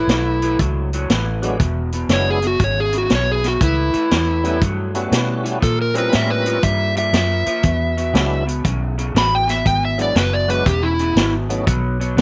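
Soulful and swaggering, this electric blues shuffle excerpt rolls along at 119 BPM in 4/4 with swung eighths, led by a dark, overdriven, up-front slide guitar solo over a slightly broken-up, lo-fi guitar riff through a small old amp with analog chorus. A round, foam-muted fingered bass and a vintage acoustic kit with a tight kick, medium-tuned snare and rolled-off top sit forward in a studio room, and from 1.4 seconds a full, lightly driven tonewheel organ joins with chorus vibrato and a slow rotary speaker. The harmony moves from A through E7, A7 and A#dim7 back to E7, and the slide guitar stops at 11.3 seconds just before a closing B5.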